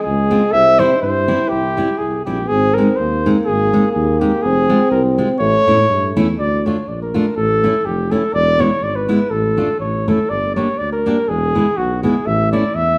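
Recorded live in one room with a wet studio reverb, this bouncy, jolly alpine folk dance excerpt at 123 BPM in a swung, rubato 2/4 sets a mellow, smooth-topped flugelhorn melody up front over a warm, soft-attacked euphonium second line that stops at 6.3 s, a dark, punchy tuba bass and a full-bodied fingerpicked jumbo acoustic guitar with audible finger squeak, moving from F minor to D harmonic minor at 6.4 s.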